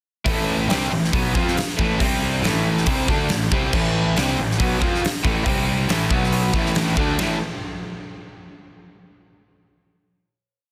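A huge arena drum kit, up front with a punchy kick, fat snare and bright cymbals, powers this short, aggressive and heavy hard rock piece, while a growly fuzz bass doubles the power-chord riff played by a hollow-body overdriven guitar, a crunchy guitar with spring reverb and a raw, double-tracked garage guitar with phaser, all driving toward a final chord at 7.2 seconds.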